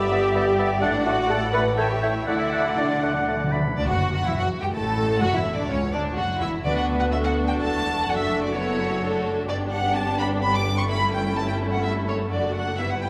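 In a straight 3/4 at 127 BPM, this cheerful, spirited classical-period movement in D major opens with the full orchestra: an up-front, rich vibrato violin section carries the melody over a second violin line, a clear, intense viola section and a distant cello and double bass foundation, all bathed in a concert hall's long reverb. For the first few seconds an airy, very quiet flute, a clear oboe and a smooth-topped clarinet add second lines, while a bassoon adds accompaniment and a mellow French horn section holds sustained chords in the background. Timpani played with medium mallets enter with a fill at 2.3 seconds, and after the winds and horns fall away by 3.8 seconds the strings carry this excerpt on, with the timpani continuing until about 7.3 seconds.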